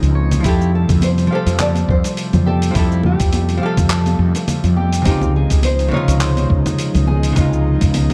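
A clean, picked archtop guitar carrying 12-bit sampler grit and tape echo, a breathy chorused pad, a round, punchy fretless bass up front and a dusty soul sampler kit of cabasa, congas, handclaps and hi-hat open this sunny, smooth sunset chillout excerpt with a swung sixteenth feel, soon joined by a twangy, slightly broken-up electric guitar playing arpeggios with warbly pitch drift and tape echo, a thumpy electronic kick, a small fingerpicked nylon-string guitar with sampler grit and tape echo carrying the melody, and soft-handed congas and bongos from 1.0 seconds, as the harmony moves from Fmaj9 to Dbmaj9 in a dark, lightly reverberant production.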